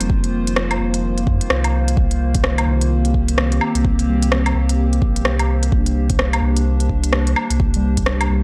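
Melancholic and wistful, this short future garage excerpt moves at 128 BPM with a swung 16th-note feel, shifting from F5 to Cm7. A warbling, detuned tape-like pad with phaser, chorus and 12-bit sampler grit holds sustained chords over a round sine sub bass, while muted, felt-like synth keys sit dark in the background with chorus and analog delay; the pad, bass and keys pump with sidechain. An overdriven organic electronic kit of smooth hi-hats, rim clicks and woodblock sits up front, a deep, layered electronic kick enters at 0.1 seconds, and the whole mix has a dry, gritty hardware sound with transformer saturation.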